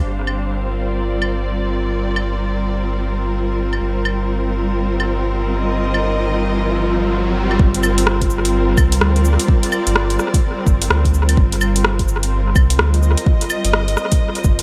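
Future garage in G minor at 127 BPM, this ghostly, wistful excerpt moves with a swung 4/4 feel as it alternates between G minor and C minor over G. A clear, lush string section holds sustained bowed chords with gentle vibrato, filtered and pumping against the beat, while a round, sine-like sub bass sits deep beneath it. From 0.3 seconds a deep house kit of cabasa, claves, metallic hi-hats and rim clicks adds a tape-warm, produced texture, treated with studio reverb and analog delay. A background riser builds from 5.4 seconds, and at 7.6 seconds a deep, up-front electronic kick drum enters to anchor the second half. The mix is echo-heavy with light reverb, leaving the strings sounding focused yet distant.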